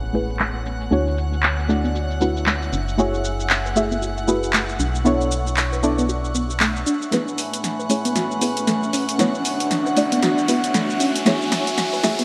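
This deep house excerpt moves at 116 BPM in 4/4 with a 60% swing on the sixteenths, carried by a punchy, tape-warm analog drum machine up front, its snare, handclaps, hi-hat and shaker softened by low-pass filtering and re-recorded in a large room. An organ-like FM bass, hollow and percussive with a fast decay, anchors the low end until 6.8 seconds, under a progression that moves from Amaj9 through Dmaj9 and F#m9 to Bm11 before returning. A moody, detuned analog pad sustains the chords with chorus and a filter sweep across the first section, while deep, nasal chord stabs with dub echo take their own filter sweep during the build-up that begins at 7.1 seconds. A soft, round pluck spins chorused arpeggios with dub echo in the background, joined by a blurred, evolving granular cloud pad and a faint, floating violin section played sul tasto high above. An impact and sub drop open the passage, and a drum fill from 7.1 seconds and an electronic riser from 8.9 seconds push toward what comes next, all set in a lush hall reverb with a veil of vinyl crackle for a smooth, late-night mood.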